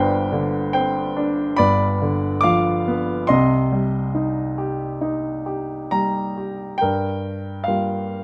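This classical solo piano passage, cut from a longer piece, is lyrical, wistful and melancholic, moving at 70 BPM in 4/4 with a flexible rubato feel in C minor. A single grand piano carries the whole 8.2 seconds, its polished, present tone sitting up front with a short sustain and spanning G1 to D6. The harmony moves from Gsus4 through G7 to settle on C minor at 3.3 seconds, then turns to Gm7 for a brief new phrase at 6.8 seconds, all framed by light reverb.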